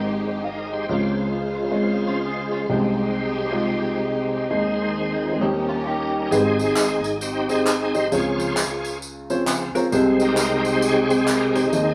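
A swung eighth-note groove in four drives this uplifting, reverent uptempo gospel passage, cut from a longer piece and set in a live-room sound with a wet reverb. A woody, natural upright piano sits up front as accompaniment throughout, beside a bright tonewheel organ holding full, clean sustained chords through a slow rotary speaker and chorus vibrato, its key click audible. Lush bowed strings hover distantly in the background with vibrato and expressive portamento, while a twangy, compressed electric guitar enters at 2.1 seconds with a picked second line under tremolo. At 6.3 seconds the strings and guitar drop out, and the organ takes a shouting solo as tambourine and group handclaps arrive with a vintage, band-limited acoustic character. The piano adds a brief fill at 9.2 seconds over a progression that returns to its opening major-seventh colour.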